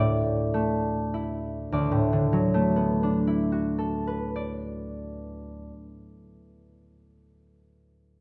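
A dark, warm production places a lone concert harp up front in a wet recital hall, its ringing, fingerpicked strings trailing off into a reverb that lingers for about 1.3 seconds. This is a short cut from a longer classical piece for solo harp, peaceful and graceful in mood, flowing in a gentle 6/8 with a free, rubato feel. The harp plays the entire 6.6 seconds, reaching from the low D2 up to F#5 and giving the sound a full, resonant depth. The opening phrase slows during its first 1.7 seconds over a Dadd9 chord, then a new section begins on a D69 chord and continues until 5.1 seconds. The acoustic tone stays warm throughout, letting each note bloom in the hall's ambience.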